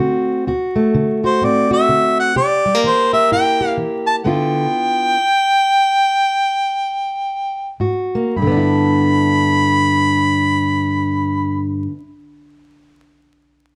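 Swaggering and gritty, this acoustic country blues cut from a longer piece moves at 102-127 BPM in a swung 4/4, settling in G major and slowing down between 4.3 and 8.4 seconds. A fingerpicked, plugged-in steel-string acoustic guitar carries the accompaniment from the very start, its boxy parlour tone sitting up front in the low and middle register. The harmonica enters at 1.3 seconds with a jazz-style solo melody, played with light vibrato and scooped notes, its smooth top bathed in plate reverb. The changes run through D7, C7 and G6 before a brief Absus2 leads into a second section, where G6 returns. A moderate small room ambience and a layer of vinyl crackle surround the pair.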